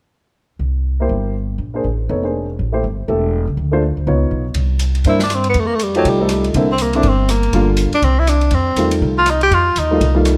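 A light reverb places this short cut from a longer piece in an intimate, close-up space, with the bass, piano and saxophone all sitting up front. It is relaxed, swinging small-group jazz in the swing and bop vein, moving at a brisk 242 BPM in 4/4 with a lilting swing on the eighth notes. A woody, thumpy pizzicato upright bass on gut strings opens at 0.6 seconds, and a worn, slightly detuned upright piano soon joins with short-sustained chords, its action noise audible, over dominant and ninth harmonies such as C7, Bb9 and F9. At 4.5 seconds an acoustic drum kit enters with an airy, polished small-room sound, mixing dark ride and hi-hat cymbals, a medium-tuned snare, rim clicks and a boomy kick. The tenor saxophone takes the melody from 5.1 seconds with a smooth top, light vibrato and a warm jazz tone, carrying the lead through the second section.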